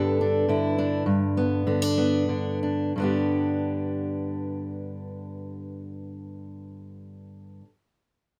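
A fingerpicked steel-string acoustic guitar opens on a G chord and carries this gentle, nostalgic folk piece alone, in 3/4 with a straight feel in G major. The tempo sits between 84 and 109 BPM, and the playing slows over the first 3.0 seconds before moving into a longer passage that runs to about 7.2 seconds. The guitar spans G2 to A4, and its fresh strings give a warm, fresh ring, with an audible finger squeak adding a close, human detail. Placed up front with an auditorium-sized body of tone, it sits in a moderate studio reverb that keeps the sound intimate. This short fragment of a longer piece lasts just under 8 seconds.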